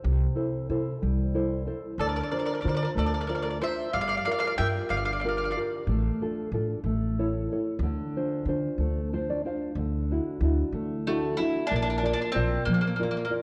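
A round, double-strung mandolin carries the melody of this lively, romantic Italian folk serenade in D minor, entering at 2.0 seconds alongside a bright bowl-back mandolin second line over a full-bodied, thumb-plucked nylon-string guitar and a woody, thumpy pizzicato upright bass with gut strings and transformer saturation, all at 62 BPM in 6/8; the guitar plays a fill at 8.8 seconds and the lead mandolin returns at 11.1 seconds, with the whole cut from a longer piece set in a moderate concert hall reverb and colored by the warbly pitch drift of worn cassette tape.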